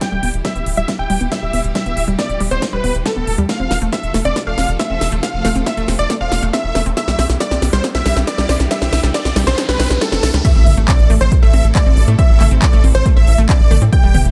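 Soaring and bittersweet, this uplifting trance passage in A minor runs at 138 BPM, cut from a longer piece, with a huge, detuned supersaw melody pumping against the kick under dub echo and a low-pass filter, doubled by a lush, warbling, bright unison pluck in the background, while a mellow, very quiet pluck arpeggio with tape echo and a filter sweep sits beneath. A clear, bowed string section holds chords over Em, F and C, a tight, punchy sawtooth bass with tube saturation drives up front, and a big-room kit with a huge snare and crisp hats plays a fill through the build-up as a dry, punchy kick thumps beneath. A riser from 6.7 s and a noise sweep lead to the drop at 10.4 s, where an impact lands on A minor in a dark production with light reverb.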